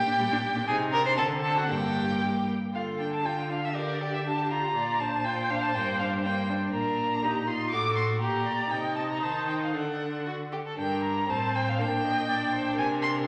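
A string quartet enters almost together at the start, opening this restless, stormy classical-period movement on a G minor chord, cut from a longer piece. It moves quickly at 120 BPM in 2/4 with an elastic rubato feel, beginning in D minor and turning toward G minor at 6.7 s. The first violin carries the melody high above the group, its warm tone shaped by expressive vibrato and portamento, sounding up front yet slightly distant. Beneath it, the second violin's rich, focused line has a smooth top, and the viola fills in accompaniment from further back with a concentrated, vibrato-coloured sound. The cello anchors the bass evenly and close by, with light vibrato. The harmony darkens through C minor and D major before the chords fall away at 12.8 s, and the players sit in the wet bloom of a scoring-stage reverb that lingers for about 1.6 seconds.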